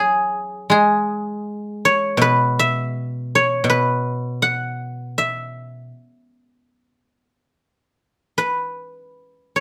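Chinese traditional solo music for plucked strings, this brief excerpt from a longer piece unfolds in a serene, pastoral mood at a free, rubato pace of roughly 70-83 BPM in 4/4. A single acoustic guzheng, played with fingerpicks, carries everything across its range from B2 to F#5, its silvery, ringing tone placed up front in a light reverb. The opening passage gives way to a new section at 8.4 seconds before the recording cuts off at 9.6 seconds.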